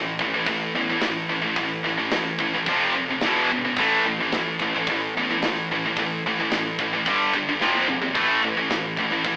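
A rough rehearsal-room recording with warm saturation and an AM-radio tone carries this aggressive, relentless heavy metal excerpt in A minor at 109 BPM, where a bright, high-gain guitar riff sits up front over a second distorted guitar in the background, a dark, round overdriven picked bass, and a tight metal drum kit with a medium-tuned snare and rolled-off top that enters at 0.2 seconds and plays a fill from 7.6 to 8.2 seconds as the power chords move from A5 through F5, E5 and G5 in a small room.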